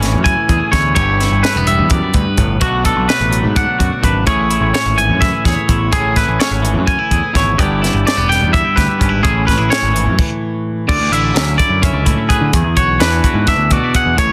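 Bright and wistful, this fragment of a longer math rock and midwest emo piece moves in 7/8 with two clean, twangy electric guitars, one comping on chords like Amaj7, G6 and Bm7 while the other spins high arpeggios through digital delay and plate reverb, over a growling overdriven picked bass and a crisp, polished fusion kit with a high-tuned snare and punchy kick, all dropping out for a brief stop at 10.2 seconds before a new passage on Dmaj9#11 and E9 begins at 10.9 seconds in a dense, heavily limited modern mix.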